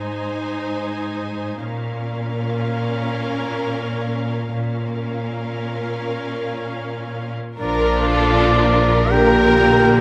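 A cinematic, emotional film score for orchestra, moving and hopeful, unfolds slowly in a rubato 6/8 at around 38-46 BPM, counted in dotted quarters, in this brief cut from a longer piece. From the start, a lush violin section carries the melody with a rich, focused tone and vibrato, set back at a distance, while a second violin line sounds close and expressive, with soft attacks and portamento. A clear viola section supplies the accompaniment, and a smooth, even cello section holds the bass up front, as the harmony moves from Ab to Bbm at 1.6 seconds. At 7.6 seconds the music shifts to a Bb chord as a solo oboe adds a warm second line with light vibrato, a tight French horn section sustains chords in the background, and a double bass section deepens the low end on a single Bb. The whole ensemble sits in the wet reverb of a scoring stage, giving the strings a spacious glow.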